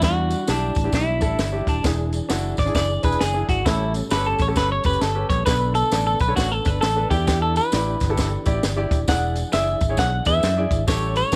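Captured in a small room, this passionate, urgent fragment of uptempo 1960s-style soul swings as a clean, picked semi-hollow electric guitar carries an up-front solo melody over an intimate concert grand piano with audible action noise, a growly, punchy fingered electric bass, a distant cocktail drum kit with a high-tuned snare, a very quiet, lightly overdriven tonewheel organ on slow rotary, and a jingly tambourine in the background, all moving through Em7, E7, A7 and Bm7.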